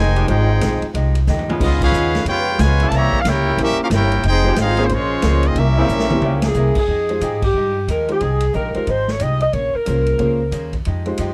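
Big band swing jazz in F minor at 182 BPM, sultry and swinging, cut from a longer piece. Bright, up-front trumpets carry the melody over a soft-attack trombone line in the background and sustained chords from a mellow, vibrato-laden saxophone section. A woody, thumpy pizzicato upright bass, boxy picked archtop guitar, open-toned baby grand piano and a distant, roomy drum kit with dark cymbals and a punchy kick support them, with drum fills and band accents marking the phrases. At 6.5 s a soft-attack, vintage-toned saxophone section takes over the melody as the trumpets and trombones stop at 6.6 s, all set in a light reverb.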